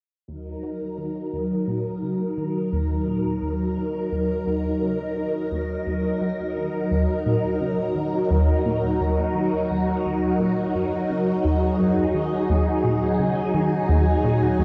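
From 0.3 seconds a swirling, vintage string machine holds sustained chords through ensemble chorus, phaser and a filter sweep, while a squelchy, resonant blip pluck fades in beneath it with a low riff soaked in tape echo, all resting on a single minor chord inside a huge, dark reverb that makes this ambient excerpt feel mysterious and expansive.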